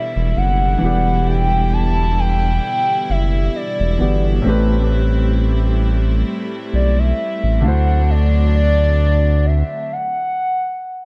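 Drenched in echo with a light small-room reverb, this moody, sensual, gently swung R&B excerpt sets a hollow, woody clarinet-like synth lead with chorus and analog delay over a natural grand piano with analog delay, floating bowed studio strings and a deep, dark analog bass up front, moving through Em7, Am7 and D7 before the piano and strings stop at 9.9 seconds and the lead carries on alone until 11.1 seconds.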